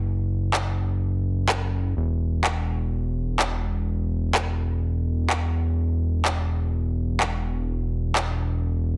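A fat, detuned sawtooth-and-square analog bass sits up front from 0.0 s, its tube saturation thickening a filter-plucked tone with a fast attack that sustains low between E1 and F#1. Layered electronic handclaps with a tape-tinged sheen join at 0.5 s and run to 8.3 s, driving a straight 4/4 progressive house groove at 126 BPM tuned to A4 = 439 Hz. The mood is driving yet emotional, set in digital ambience with a dense, heavily limited modern master, in a short passage cut from a longer piece.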